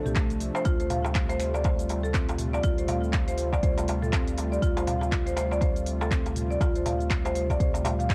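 A driving afro house groove at 121 BPM in 4/4, swung at 59% on the sixteenths, rides a deep electronic kick that sits loudest in the mix with a tape-softened thump, joined at the same moment, 0.2 seconds in, by a crisp, close darbuka played with soft hands. An afro-pop kit adds finger snaps, handclaps, crisp hi-hats, shaker and toms, colored by cassette tape and the feel of a small room. Underneath, a round sine sub bass with tube saturation holds the low end, while a woody marimba with medium mallets spins mid-forward arpeggios through tape echo. A detuned sawtooth pad with chorus and a slow attack sustains smooth, mellow chords over a single Dm7 harmony in D minor pentatonic. Bass, marimba and pad all pump with the sidechain, and the whole 8.1-second cut from a longer piece has a dry, intimate home-cassette character with a warm, driving mood.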